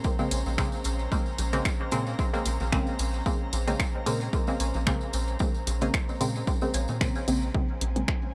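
Dub techno at 112 BPM in Bb minor, nocturnal and hypnotic, this short cut from a longer piece rests on a single Bbm9 chord, with an overdriven, punchy analog kick and a layered deep house kit of finger snaps and hi-hat driving a lightly swung groove alongside a jingly, close tambourine and very quiet, tape-toned congas and bongos. Up front, a round triangle-and-square sub bass pumps against the kick, while a muted, detuned sawtooth chord stab with chorus, phaser and dub echo pulses in the low register and a second, mellow stab adds a very quiet riff higher up. Behind them an airy, breathy pad with a noise layer and slow attack sustains chords through chorus and sidechain pumping, all in light reverb, with a band accent at 7.0 seconds.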